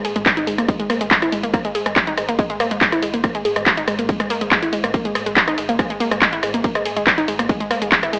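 Dark and driving, this short cut of peak-time techno runs in a straight 4/4, built on a detuned, wave-folded unison pluck riff that sits up front, pumping against the sidechain through an analog delay. A punchy analog drum machine with a tape-warm tone lays down handclaps, hi-hat, ride cymbal and rim click, while an overdriven electronic kick enters at 0.3 seconds, and a round, low-passed sub bass and a swarming, granular drone lurk in the background. The whole recording has a gritty hardware feel with an AM-radio colour and light reverb.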